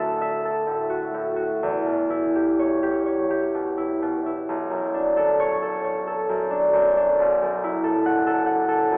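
A solo concert harp opens this brief excerpt of a classical piece, cut from a longer work. It unfolds in B minor at a gentle, rubato 62-70 BPM in 3/4, its mood mysterious and gentle. The harp's thumb-plucked strings sound ringing and up front, spanning B1 to F#5 as the harmony moves through Dadd9, Em6, Bm9 at 4.5 seconds and F#m7/B at 7.2 seconds. A cathedral reverb with a 5.3-second decay bathes the instrument, and the listener seems placed further back in the room. A narrow, telephone-like filter colours the whole sound, lending the warm playing a distant, veiled quality.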